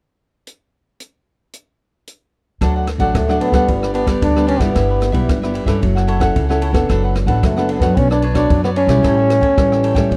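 Samba and choro in D major at 112 BPM, this festive, playful fragment opens with an open jazz drum kit alone at 0.5 s, its boomy kick, dark cymbals, hi-hat, ride and rim click sitting up front in a small, natural-sounding room. At 2.6 s a crisp, bright picked cavaquinho, a full-bodied fingerpicked classical nylon-string guitar with fresh strings, and a woody pizzicato upright bass with steel strings join, moving from D through G, Em/G and F#m7 toward A7. A clear, vintage jazz-style trombone takes the solo melody up front from 3.2 s with light vibrato, and the whole fragment is captured in a dry, close 1970s-style studio sound.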